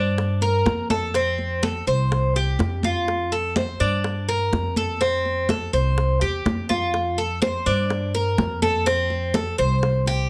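Picked Cuban tres arpeggios, metallic and up front with paired, partly octave-doubled strings, open this relaxed, danceable son and guajira fragment, together with a woody, thumpy pizzicato upright bass on gut strings. At 0.2 seconds, high-tuned congas with a thin, bright skin and a compressed, saturated, hard-handed sound join tight bongos set in the background, all moving at 124 BPM in a straight 4/4 through a Gm7–F–C–F cycle in F major. Close, detailed microphones and very little reverb keep the sound intimate.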